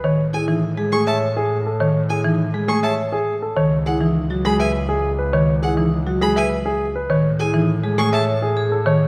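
An up-front, warm concert grand piano carries the melody over a buzzing, woody marimba and a rich, bowed double bass from the start of this meditative yet urgent minimalist classical excerpt at 102 BPM in 3/4, joined at 0.3 seconds by arpeggios from a clear, focused, distant violin and a metallic, ringing vibraphone with slow motor vibrato, all moving from Amaj7 to C#m11 and back within a moderate scoring-stage reverb.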